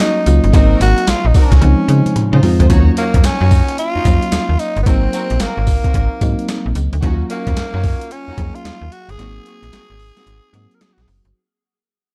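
Bouncy and flirty, this swung new jack swing R&B excerpt sets a breathy, raspy tenor saxophone melody over a round, warbling FM electric piano with chorus, while lush, distant bowed strings add stabs in the background. Up front, a gritty sampler-style boom bap kit with thumpy kick, snare, hi-hat, handclaps, tambourine and toms drives alongside a snappy, metallic slap-like FM bass that joins at 0.3 seconds. A drum fill at 1.6 seconds leads into a long fade-out from 2.7 seconds, and a break arrives at 9.2 seconds in a dark, dry production.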